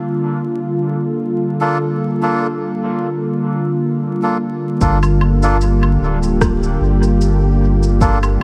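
Light reverb and a layer of vinyl crackle frame this spacious, deep ambient dub fragment in G minor at 75 BPM, gently swung on the sixteenths and tuned to A4 = 438 Hz. A smooth, detuned sawtooth analog pad with chorus holds a sustained Gm7 up front, and from 1.6 seconds a reedy, breathy, close-miked melodica adds dub-echoed stabs. At 4.8 seconds a round, sine-like sub bass with tube saturation enters alongside a layered, tape-warm electronic kick with small-room ambience and a light electronic shaker, woodblock and rim click carrying dub echo.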